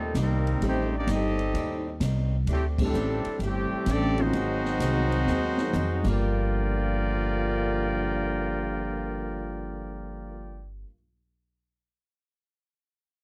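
A woody, thumpy pizzicato upright bass sits up front in this brassy, swinging big band jazz excerpt in G minor, moving at 129 BPM with a swing feel. Above it, a trumpet section with a smooth top carries the melody while a mellow trombone section, tight and softly attacked with light vibrato, plays a second line. Behind them, a dark, boxy upright piano and a bright, picked swing-style acoustic guitar with fresh strings fill in the accompaniment as the harmony moves from Cm7 through Am7b5, D7sus4 and Ab7 to Gm7. The drum kit sounds distant and roomy, with a punchy kick and medium-tuned snare. The band hits an accent at 2.7 seconds, and the drums play a fill from 5.3 seconds before dropping out at 6.1 seconds, leaving the band to carry the second section. The recording is dry, with little reverb and a faint mains hum beneath the ensemble.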